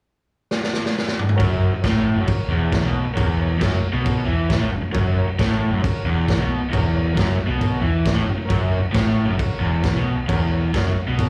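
Garage rock at 135 BPM in F# mixolydian, raw and rowdy, cut from a longer live club set heard through the venue's PA: a gritty, boomy drum kit with a high-tuned snare opens with a fill at 0.5 seconds, then at 1.4 seconds an overdriven, double-tracked guitar riff with slapback echo crashes in on an F# chord alongside a dark, round hollow-body bass and mellow, clean combo organ chords sitting low in the mix.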